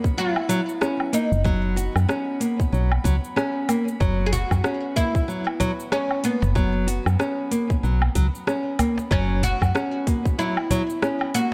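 A round, up-front FM bass with tube saturation and sidechain pumping anchors this peaceful organic downtempo piece at 94 BPM in F# mixolydian from 1.3 to 9.7 seconds, beneath a bright, double-stringed oud melody and fingerpicked nylon-string guitar arpeggios, both touched with digital delay, alongside a tight electronic kick re-recorded in a large room, an afro-pop kit of metallic hats, rim click, shaker and woodblock, a soft-handed cajon joining at 4.3 seconds, and a glassy, drifting harmonics texture in the background, all over a single F#sus4 chord in a dark production with light reverb.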